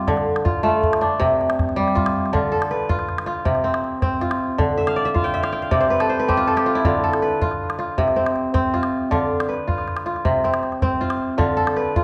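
The rhythm moves in a rolling twelve-eight metre with a straight, even feel. This reflective, flowing West African string and xylophone music is a short excerpt of a longer piece. The kora sits up front, playing ringing, crisp fingerpicked arpeggios across a broad range, while a small calabash keeps time close and dry beneath it. The harmony rocks between D minor and C chords, shifting into a new section at 2.3 seconds. The kora takes a fill from 4.8 to 6.9 seconds, where the chords briefly fall away. The recording blooms in a reverberant recital hall and carries the worn, warbling pitch drift of old cassette tape.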